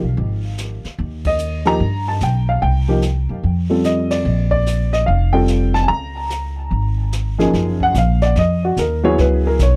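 A jazz piano trio excerpt at 146 BPM in a swung 4/4, sophisticated and warm, opens on the woody pizzicato upright bass, joined at 0.2 seconds by brushed drums with dark cymbals and a boomy kick sitting well back, before the up-front upright piano, short in sustain and touched with tape echo, enters at 1.3 seconds and carries a solo from 7.5 seconds over chords moving from Db7 through Bbmaj7 to F#69, all in a dry, close 1970s-style studio sound with band accents at 1.2 and 4.1 seconds.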